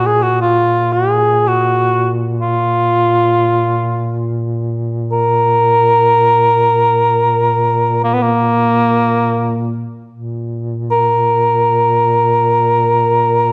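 Unfolding in free time, this short excerpt of Caucasian folk music carries a longing, solemn mood. A dusky cor anglais sings the melody with light vibrato in a classical manner, sharing the front of the mix with a mellow, smooth-topped duduk that holds a low drone with folk-style vibrato. The phrase is stated and then taken up again at 10.1 seconds, and light reverb gives the sound a warm glow.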